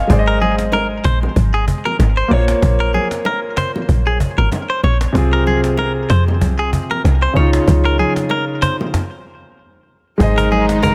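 Sunny and romantic, this afrobeats excerpt moves at 95 BPM in 4/4 with a gentle sixteenth-note swing, centred in Ab major and drifting through Bbmadd9, Fm/C and Dbadd9 before landing back on Ab. A dark, intimate concert grand piano carries the accompaniment from the start, its smooth, vintage tone touched by audible action noise and deep bass. Underneath, a punchy, woody log drum bass sits up front with a fast attack and decaying, mellow notes, while a snappy cajon played with soft hands and congas and bongos tucked in the background fill out the groove. A clean, twangy electric guitar recorded direct picks a bright riff in a narrow upper range, trailed by tape echo. After a stop from 8.9 to 10.2 seconds, a lush studio string section enters at 10.2 seconds with bowed, vibrato-rich sustained chords as the harmony returns home. The mix has light reverb and studio ambience, with a dense, heavily limited modern master.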